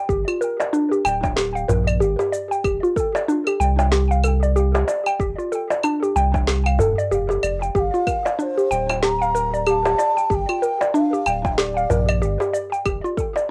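Recorded at home on cassette in a snug booth, this mystical, hypnotic organic downtempo excerpt moves at 94 BPM in G minor with a swung sixteenth feel. A woody, mallet-like FM synth pluck spins arpeggios up front through chorus, phaser, 12-bit sampler grit, tape echo and plate reverb, over a round sine sub bass with sidechain pumping and a deep electronic kick, with electronic cabasa, claves, snare and a soft-handed clay-shell darbuka filling out the groove. At 7.8 s a breathy bass bansuri with vibrato and tape echo carries the melody until 12.5 s, as the harmony moves between Gm, F and Gm7.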